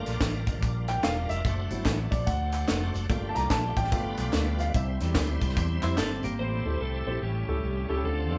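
A clear, intimate grand piano with audible action noise carries the lead over a swung, hopeful and soulful uptempo gospel groove, backed by a bright, shouting tonewheel organ with key click and slow rotary speaker, a warm, amped fretless electric bass, a tight funk drum kit with a high-tuned snare, and tambourine and handclaps in the background, while a clean picked electric guitar adds a second line at 5.8 s, and at 6.4 s a punchy, vintage horn section and a dark, slightly broken-up electric slide guitar take up the melody just after the drums and percussion stop at 6.3 s, all playing live in one room with moderate reverb.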